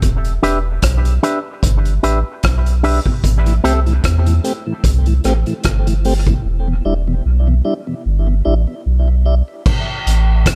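A lightly swung sixteenth-note groove from an acoustic vintage drum kit with a punchy kick and dark cymbals and a deep, round sub bass anchors this spacious, meditative dub reggae excerpt, as a clean, compressed electric guitar with an envelope filter and dub echo appears at 0.4 s, and a mellow tonewheel organ, high-pass filtered and echoed, enters at 3.5 s, over Em7 and Am7 chords in an echo-heavy, reverberant mix.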